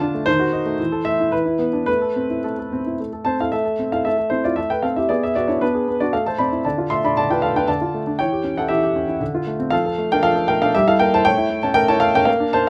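A classical-period piano sonatina fragment in A minor, dramatic and serious in 3/4 at 117 BPM with a flexible rubato feel, played on a solo grand piano that sounds warm, intimate and up front, with audible action noise caught by close, detailed microphones in light reverb. It spans D3 to C6 and moves through tense diminished chords before settling on an A major chord at 11.3 seconds.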